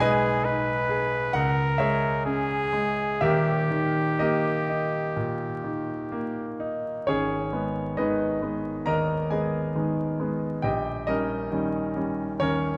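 Close, detailed microphones and a moderate scoring-stage reverb frame this elegiac, yearning fragment of a romantic classical duo, with a vinyl crackle beneath it. A clear, soft-attacked trumpet sings a solo melody up front in a flexible rubato 4/4, while a polished concert grand with deep bass and short sustain accompanies. After the trumpet falls silent at 6.6 seconds, the piano carries the passage alone until it breaks off at 12.8 seconds.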